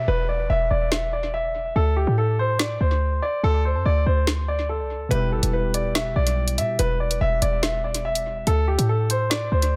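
A half-time drill groove drives this dark, menacing hip hop excerpt: the electronic drum kit enters at 0.9 s with a woody snare and warm hi-hats set up front, while a punchy, tight 808-style bass with a sine body and noise layer hits short, decaying notes. A natural, deep-bottomed concert grand piano carries the melody through tape echo, with a faint downlifter sweeping in the background at the very start. Warbly, nostalgic lo-fi synth keys with chorus and tape echo add mellow accompaniment from 5.1 s, all sitting in an echo-heavy mix with light reverb and digital ambience.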